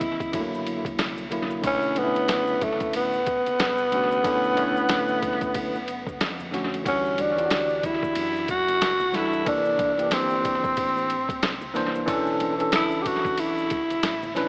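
A growling, breathy tenor saxophone carries the melody up front from the start of this nocturnal, cool jazz-hop cut at 92 BPM in B minor with a swung 16th feel, over a bell-like tine electric piano, a round, dark fingered electric bass sitting in the background, a gritty, pitched-down boom bap sampler-style kit with a thumpy kick, and very quiet congas and maracas, the mix bathed in spring reverb with an echo-heavy, AM-radio sound and tape echo on the sax, piano and drums, as the harmony moves from Bm11 to Em9 at 6.9 seconds.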